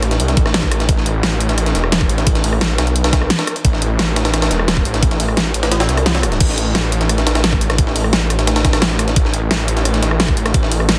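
A thick, detuned sawtooth bass with chorus, overdrive and sidechain pumping sits up front between E1 and C2 over a huge-snared, overdriven dubstep kit and a gritty, pitched-up breakbeat kit with a high-tuned snare, while a knocking, overdriven electronic kick joins at 0.4 s and drops out from 5.7 to 6.4 s in this dark, mechanical and aggressive 174 BPM technical drum and bass drop in A minor, dry and densely limited.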